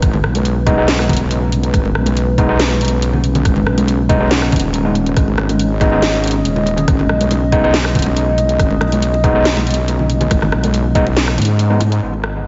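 An up-front, saturated wobble bass with sawtooth bite and chorus drives this heavy, meditative slice of half-time deep dubstep, set beneath a deep, detuned analog pad with chorus and phaser that holds one sustained minor chord. A compressed, pitched-down kick thumps until 11.0 s beside an electronic garage kit of cracking snare, rim click and bright hats, very quiet close and dry congas played with hard hands, and from 0.7 s overdriven tine electric piano stabs run through a combo amp, low-pass filtered and fed into dub echo. A lush hall reverb soaks the dreamy mix, which carries vinyl crackle and a dulled top end.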